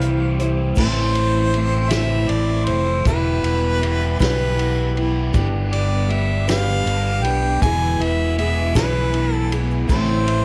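A clear harmonica carries the melody with light vibrato and scooped notes in this reflective, dusty folk rock and heartland rock passage, cut from a longer piece in A minor at a slow 53 BPM in 6/8. Beneath it, a boxy picked steel-string acoustic guitar, a bright, double-tracked overdriven guitar riff with phaser, and a round, up-front fingered bass move through C, Am, Em, G and E. A vintage drum kit with dark cymbals and a fat snare sits in the background, while a very quiet bowed string section adds lush sustained chords and a grainy tube shaker enters at 0.8 seconds, all under light reverb and the warbling pitch drift of worn cassette tape.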